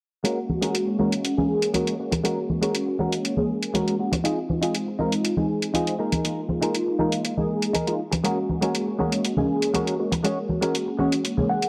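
A joyful, funky slice of filtered disco house, this excerpt moves at 120 BPM in a straight 4/4 feel in Ab mixolydian, cut from a longer piece. A punchy, detuned sawtooth polysynth sits up front with a dark, plucky comp, colored by chorus, phaser, cassette tape character and a low-pass filter, while a filter sweep runs across the whole passage from 0.2 to 11.7 seconds. A twangy, direct-recorded clean electric guitar plays a picked, compressed riff through lush chorus and a low-pass filter, ranging from Ab3 up to Gb5 and adding a short fill from 11.2 seconds. Bright, layered electronic hi-hats drive the groove alongside small-room maracas and congas that carry their own low-pass filter. The harmony moves from Ab9sus4 to Fm7 and Bb7sus4 before returning to Ab9sus4, all captured in a dry, gritty hardware sound with light reverb and a digital ambience.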